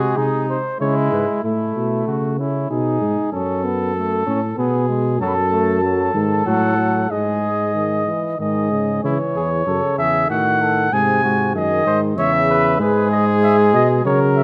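This is a classical imitative canzona for brass ensemble, elegant and stately in mood, moving at 96 BPM in a straight 3/4. The mellow cornet carries the melody up front with light vibrato and a soft attack: it sounds briefly at the opening, falls silent at 1.3 seconds, and returns at 5.2 seconds to lead through to the close. Beneath it, the trumpet holds a second line, also mellow with light vibrato, while a warm trombone with a smooth top fills in the accompaniment. A mellow tuba anchors the bass, up front yet roomy, with light vibrato and a gentle onset. The harmony moves through chords such as C#m, A, F#m and a diminished D# chord before settling back toward G#m. The players are captured by close, detailed microphones in a recital hall with moderate reverb, and the passage is cut from a longer piece.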